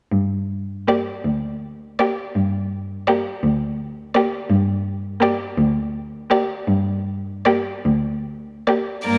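Heard in a moderate scoring-stage reverb, this solemn, elegiac fragment of a slow romantic string quartet movement in a rubato 6/8 opens with the cello alone, close and intimate up front on the bass line, before the other three enter at 0.9 s: a first violin with light vibrato and an airy sul tasto bow on the melody, a rich, floating second violin on the second line, and a pure, smooth-topped viola in the accompaniment.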